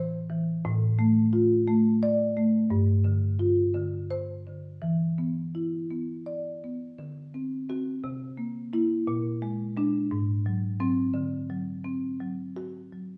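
In a straight 6/8 metre, this reflective, flowing contemporary classical piece for solo marimba, cut from a longer work, places the woody tone of padauk bars struck with medium mallets up front across a range from G2 to D5, moving from Am and Dm/A through a chain of seventh chords such as D7, C7, Bb7 and G#7, set within the wet reverb of a stone room.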